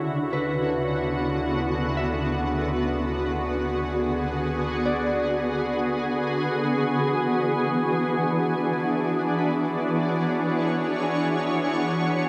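A shimmering, ethereal pad holds sustained chords up front from E9/D to E13, joined by a fingerpicked Celtic harp ringing softly in the background through a diffuse delay, and a round, deep analog bass with tube saturation that fades out by 6.5 seconds, all in a serene, peaceful ambient piece at 73 BPM with a dark, warm production steeped in wet cathedral reverb.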